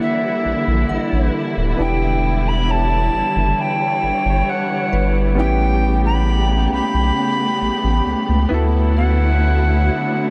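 A slow, straight 4/4 pulse at 67 BPM carries this smooth, romantic R&B fragment, its chords moving from Gm6 through Em7 and A9 to D69 inside a dreamy mix soaked in huge ambient reverb. An airy, woody alto recorder sings the melody up front with vibrato and a tongued chiff, trailing a diffuse ambient delay, while muted, con sordino strings hold lush, veiled chords and a clear grand piano with audible action noise accompanies from the background. A deep, thick, saturated sub bass enters at 0.5 seconds, and a very quiet glassy FM synth bell adds crystalline, chorused decays for texture.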